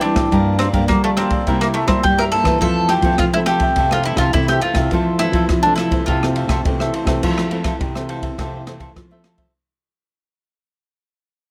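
A picked, double-strung bowl-back mandolin sings a sunny, lively melody up front over crisp, mellow cavaquinho, thumb-plucked classical nylon-string guitar chords with fresh strings and a dark, smooth open jazz kit with a boomy kick, rim clicks, ride and crash cymbals, while a fingerpicked nylon-string guitar bass carries the low end through Gm7, C7 and Fmaj7 in this straight 104 BPM samba-choro in F major. The mandolin drops out at 6.9 seconds, and the rest of the band fades out from 7.2 seconds in this close, detailed, lightly reverberant recording cut from a longer piece.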